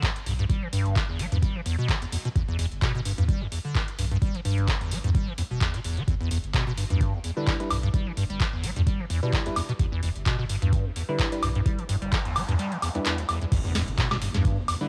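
An overdriven kick, booming analog drum machine with crisp snare, handclaps, metallic hats, woodblock and crash, and a squelchy, resonant acid bass riff with chorus and sidechain pumping open this raw, hypnotic acid house excerpt at 129 BPM in E minor pentatonic, joined by a round sine sub bass, then from 7.4 s by soft, evolving chorused chord stabs with tape echo, before a noise sweep and the kick's brief dropout lead into the drop at 13.5 s, where an impact lands, all with the grainy feel of a home cassette recording.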